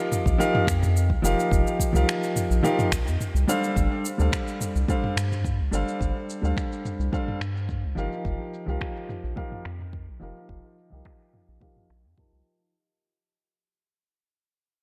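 Sunset chillout at 107 BPM with a wistful, smooth mood: this excerpt sets an intimate, up-front grand piano, its action noise audible under a low-pass filter and tape echo, over a round, nasal analog bass, a deep electronic kick and a layered deep house kit of cabasa, finger snaps and filtered toms, with the dreamy mix moving from F9sus4 to G9sus4 in a lush hall reverb until filter sweeps on the drums and piano and a fade-out take hold from 3.8 s.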